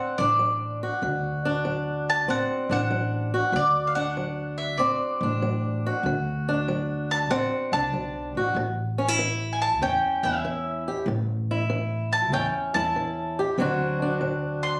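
Swinging eighths in 4/4 give this laid-back, swaggering acoustic country blues excerpt its strut, with a bright, up-front bowl-back mandolin picking the melody on doubled strings over boxy, fingerpicked swing-style acoustic guitar and a woody, growly pizzicato upright bass that enters at 0.2 seconds, all caught in a phone-in-the-room recording touched with light reverb and compression as the harmony moves from D7 to A and back.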